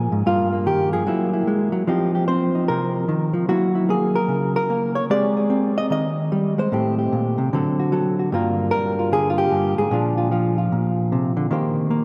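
A vast, echoing cathedral reverb surrounds this recording, letting every note ring on for seconds into a cavernous space. Inside that haze sits a lone electric hollow-body jazz guitar, fingered and clean, with a dark, compressed tone placed up front. This is solo jazz in 4/4 with a swung feel, and its mood is playful and warm. The guitar carries the whole performance from 0.0 to 12.0 seconds, moving through a colourful progression that begins on Gm7 and passes through Gb9, Abmaj7 and a D7 before landing on Eb6 at 11.5 seconds. The passage is taken from a longer piece, so it opens and closes mid-performance.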